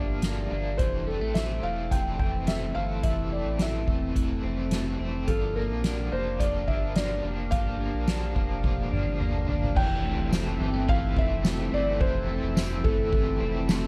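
A felt-muted upright piano carries the melody in this dreamy, floating dream pop excerpt, its boxy, intimate tone and audible action noise set in slapback echo and plate reverb. Beneath it, a twelve-string electric guitar plays twangy, bright arpeggios through lush chorus and its own slapback echo, while an overdriven electric guitar adds bright accompaniment coloured by tremolo and chorus. A warbling, nostalgic pad holds lo-fi sustained chords, and a round, deep analog bass anchors the low end. A soft-mallet drum kit enters at 0.2 s with a boomy kick and fat snare in a big-room sound, and a drum fill from 8.6 to 9.8 s leads into a new section. The harmony drifts between Gm7 and Fmaj7, all within a dark, warm production with moderate studio ambience.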